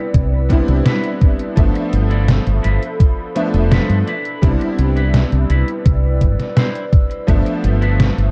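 A dark, cassette-tape haze with little reverb frames this woozy, dreamy vaporwave excerpt in C major at 84 BPM, where a clangy electric grand piano with sampler grit and delay plays over a warbling, chorus-and-phaser-washed pad, a clean picked electric guitar riffs through delay, a round, woody fretless bass sits up front with tube saturation, and a detuned 8-bit drum machine's fat snare and hi-hat play alongside a thumpy electronic kick that drops out at 7.4 seconds, all moving between Cmaj9 and G13.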